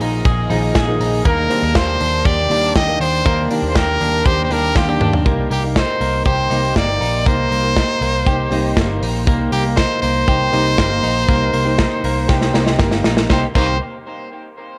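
Restless and bittersweet, this jangly indie pop cut from a longer piece pairs a warm, full-bodied fingerpicked acoustic guitar with a bright, compressed twelve-string electric guitar spinning arpeggios, both trailing dub echo, over a dark, round, foam-muted bass and a tight, mid-forward studio drum kit that marks its turns with fills at 4.8 and 12.3 seconds. At 1.3 seconds a brilliant, forceful trumpet takes the melody up front, punchy and echoing, with vibrato and scooped notes, as the chords move from Ebmaj7 into Cm7 at 5.3 seconds. The echo-heavy mix sits in a light studio reverb.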